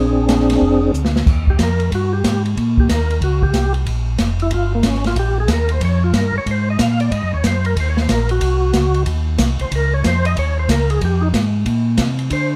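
A dark, lightly reverberant production frames this greasy, soulful fragment of a swinging soul jazz organ trio in 4/4. A fat, lightly overdriven tonewheel organ with percussive second-harmonic attack, key click, chorus vibrato and a slow rotary speaker carries the melody and takes a solo from 1.3 seconds, while a mellow, round second tonewheel organ, clean through its own slow rotary speaker, holds down the bass. An acoustic jazz kit sits up front in an airy small room, with dusky cymbals, a medium-tuned snare and a boomy kick, and it plays a fill at 0.9 seconds just before the solo begins.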